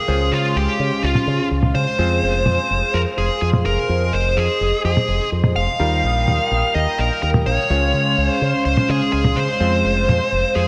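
A dark, overdriven lead guitar carries the melody up front with digital delay in this melodramatic, danceable italo disco cut at 126 BPM in F minor, over an envelope-filtered fingered electric bass, a mellow, chorused analog pad with slow-attack sawtooth chords, clangy electric grand piano stabs and a dry, damped 70s drum kit with gated reverb sitting in the background, the mix framed by a lush hall reverb and bright 1980s-style digital production as the chords move from Dbmaj7 to Fm, Ebadd9 and back.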